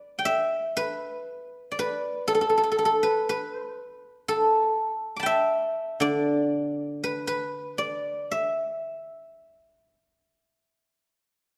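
A solo guzheng, bright and silvery, rings out up front in this short excerpt of Chinese traditional plucked-string music, its fingerpicked tones spanning from low D3 up to high D6. The playing moves in free rubato time, carrying a longing, contemplative mood. A moderate recital-hall reverb lets each note hang in the air until the instrument falls silent at 11.4 seconds.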